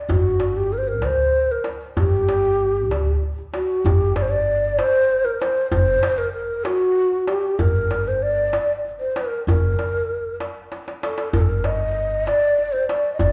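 Melancholic and hypnotic, this excerpt of an Arabic maqam ensemble in G maqam nahawand moves at 64 BPM in a straight 6/8, with a breathy, hollow end-blown ney carrying the melody up front with vibrato and a soft attack, a woody, thumpy pizzicato upright bass underneath, and a crisp, deep metal-shell darbuka struck with hard hands, all three sounding throughout in a reverberant recital hall, the darbuka adding a fill at 10.7 seconds.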